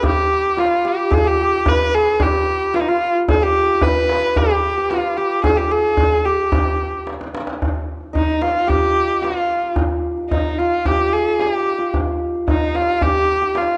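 Close, detailed microphones and a light reverb give this festive Persian modal ensemble excerpt an intimate clarity. A single bowed kamancheh leads up front with a biting, focused tone, singing the melody with vibrato and portamento, while a bright hammered santur traces a shimmering, ringing second line alongside it. The tombak keeps a tight, hard-handed pulse throughout and plays a fill from 7.1 to 7.6 seconds that ushers in the second section.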